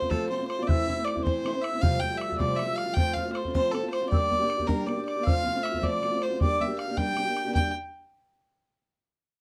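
A 6/8 jig at 105 BPM in G dorian drives this spirited Celtic folk passage, with a dark, nasal, reedy bowed fiddle carrying the melody up front, a boxy fingerpicked steel-string parlour guitar with fresh strings and audible finger squeak also up front in accompaniment, a boomy, open bodhran sounding close, and a mellow, unsteady wooden whistle with airy chiff and vibrato as a distant second line in the background, set in light reverb.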